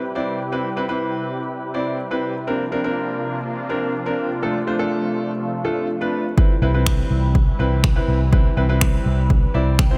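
Dance-pop with a summery, upbeat mood, heard as a short cut from a longer piece in a straight 4/4 metre. A filtered supersaw swell opens the passage with soft-attack, detuned sawtooth chords that evolve under a lush chorus and pump with sidechain compression, while a smooth, vintage grand piano enters almost at once, sitting up front and pumping along with the pad. The harmony moves through Cmaj7, Bbadd9 and F6 before returning to Cmaj7, and at 6.4 s a punchy analog drum machine arrives with finger snaps and a forward kick. A dark, round, foam-muted electric bass follows at 6.6 s, its amped tone holding a low C and pumping in time with the pad and piano. The grand piano adds a short fill at 9.3 s, and the whole mix floats in a dreamy cathedral reverb with a long tail.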